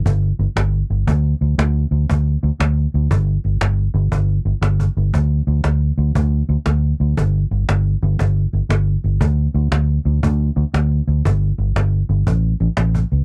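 In a 12/8 pulse with a straight, danceable feel, this short highlife guitar band excerpt is carried by just two players from about 0.1 seconds to 13.2 seconds. A muted, fingered electric bass sits up front, its dark, round, foam-damped tone amped and punchy, moving in a low register between G1 and D2. Beneath it, a cajon played with soft hands gives a snappy, acoustic crack with snares buzzing, its vintage, band-limited sound sitting lower in the balance than the bass. The recording is dry and close in a 1970s studio manner, with little reverb, so both parts feel immediate and intimate. The overall mood is warm, built for dancing.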